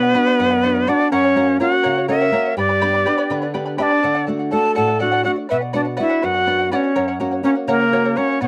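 This Andean folk excerpt for a small ensemble moves at 82 BPM in a straight 6/8, with a mood that is festive yet wistful. A breathy, bright cane quena carries the melody up front, its soft attack, vibrato and close-miked presence giving the line an expressive, intimate quality. Beneath it, a clear clarinet in a classical style plays a second line. The accompaniment comes from a shimmering charango, fingerpicked on double strings with some octave-doubled courses, and a fingerpicked nylon-string guitar in a classical manner, both acoustic and sitting lower in the mix. The harmony circles through Bm, F#, G and D before returning to Bm and F#, all four parts playing throughout the 8.5 seconds. The sound is dry and close, a 1970s-style studio recording touched with light reverb, cut from a longer piece.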